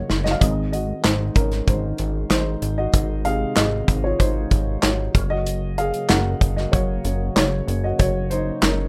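A short drum fill opens this anthemic, warm excerpt of piano-driven pop at 95 BPM in Ab mixolydian, where a dark, woody upright piano with audible action noise carries the lead over a fat, detuned analog bass, a punchy small-room country drum kit with handclaps, and a percussive tonewheel organ with key click and fast rotary speaker sitting in the background, all moving from Ab to Gb at 5.1 seconds in a rough home demo mix with light reverb.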